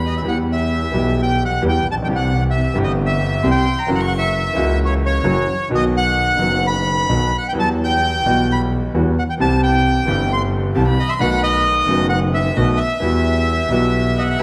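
Tango at 132 BPM in E harmonic minor, passionate and tense with a rubato feel, where an up-front, reedy bandoneon carries the melody over smooth, deep-bassed vintage grand piano and a distant bowed double bass with soft attack and portamento, while a dark, woody bowed violin with vibrato adds a sparse second line, returning at 10.8 seconds, all in a moderate recital-hall reverb.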